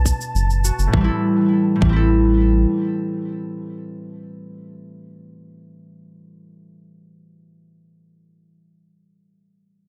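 Intimate and delicate, this short folktronica fragment, cut from a longer piece, moves at 102 BPM in a straight 4/4 feel in A dorian, with chords shifting from Bm7 to Am7. A bright, ringing concert harp sits up front playing fingerpicked arpeggios, shaded by a low-pass filter and a digital delay, and it carries on until 8.4 seconds. Beneath it, a round, deep analog bass blends detuned sawtooth, sine and triangle tones with a fast attack and a dark, sustained body, holding the low end up front until 2.7 seconds. A tight, overdriven electronic kick drum, re-recorded in a large room, sits in the background, while a brief overdriven cabasa, re-recorded in a small room, adds its rattle. At the very start, a faint flickering, grainy texture with a slow attack and long release hovers high above, bathed in plate reverb, and the whole piece sits in a light reverb.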